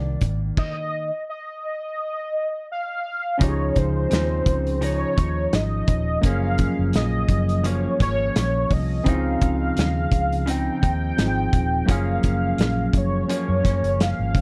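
This sunny, hazy bedroom-pop excerpt sounds close and dry, with little reverb around an up-front drum kit and a velvety synth lead. At 85 BPM in 4/4 with a light 16th-note swing, it opens on an Ebmaj7 before a stop from 0.6 to 3.4 seconds, after which the groove settles into Dbmaj9 and Gbmaj7. The smooth, full-bodied synth carries the melody with ensemble chorus, its detuned sawtooth tone and filter sweep sitting high in the mix. A clean, compressed semi-hollow guitar with subtle chorus and vibrato plays accompaniment beneath it, while a foam-muted vintage bass adds a round, dark low end. The loose indie kit has a punchy kick, dark cymbals and a pumping room sound. From 3.4 seconds, a barky tine electric piano joins with light overdrive and a cassette-tape character.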